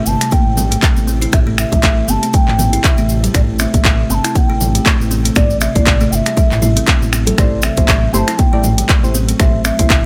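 A small, close room gives this short afro house excerpt an intimate, tape-tinged sound, with a punchy, layered electronic kick and a house drum kit of finger snaps, handclaps, hi-hat and toms sitting up front. At 119 BPM in 4/4 with a 16th-note swing, the groove feels spiritual and warm, resting on a single Am7 chord in A dorian. A dark, detuned saw bass rumbles and beats low under tube saturation, pumping against the kick, while a buzzing, woody kalimba plays short, bright arpeggios that also pump and echo through a digital delay. Above them a mellow, hollow bansuri carries the melody with vibrato and a crisp attack, its bamboo tone trailed by delay, and a very quiet ethereal pad holds slow-attack, detuned chords beneath. Grainy cabasa and soft-handed, vintage congas add gentle acoustic texture in the background. At 7.4 seconds, round, warm analog keys join with chorused, delayed stabs shaped by a filter sweep.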